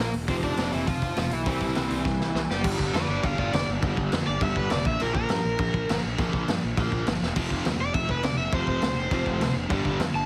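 A bright, crunchy overdriven guitar carries the melody up front through this energetic, rebellious punk rock excerpt at 204 BPM, with an overdriven guitar solo from 2.7 seconds after a drum fill. Beneath it, a dark, compressed overdriven guitar riff sits in the background, joined by a bright distorted guitar riff that drops out after 2.5 seconds and returns at 7.4 seconds. A growly fuzz bass and a gritty, saturated small-room drum kit with a boomy kick drive the track, all heard through a dry, heavily compressed, radio-like sound.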